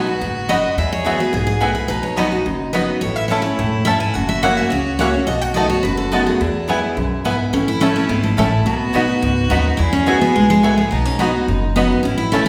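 A straight, steady 4/4 pulse carries this rustic, virtuosic bluegrass passage cut from a longer piece: a bright, full-bodied picked dreadnought guitar sits up front on the melody, while a second picked guitar, finger squeaks and all, supplies accompaniment over a woody, thumpy pizzicato upright bass on gut strings. A close, earthy fiddle with light vibrato plays a second line, a double-strung mandolin adds stabs, and a twangy fingerpicked banjo enters at 0.5 s with a very quiet melody of its own. The chords circle through B, Eadd9, A, F#7 and E, and the band rings out in the wet reverb of a church or concert hall.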